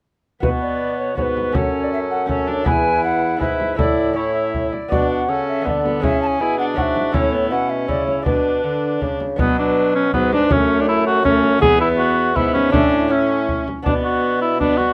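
A small period consort begins a rustic, solemn dance in triple time at 0.4 s: a hollow, pure-toned alto recorder with a tongued chiff carries the tune over the smooth, up-front second line of a mellow cor anglais. Beneath them, a delicate fingerpicked lute with doubled gut strings sits in the background, a reedy, distant bowed viola fills in the harmony, a bassoon with light vibrato holds the bass, and a large frame drum adds deep, soft-handed strokes. The close, dry recording catches fine detail, and this portion of a longer piece returns to its opening phrase at 9.4 s.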